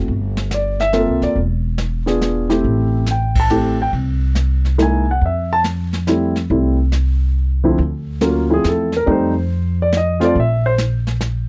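Jazz piano trio in a relaxed, sophisticated swinging waltz, cut from a longer piece, with a concert grand carrying the melody up front in a warm, short-sustained tone with deep lows. Pizzicato upright bass sits up front with a woody, steel-strung sound, while a brushed kit adds dark cymbals, hi-hat, a medium-tuned snare and a boomy kick beneath. The band hits a shared accent at 3.3 seconds, the harmony turns toward D minor at 7.8 seconds, and the piano drops out at 10.7 seconds, all captured in a dry, close 1970s-style studio sound.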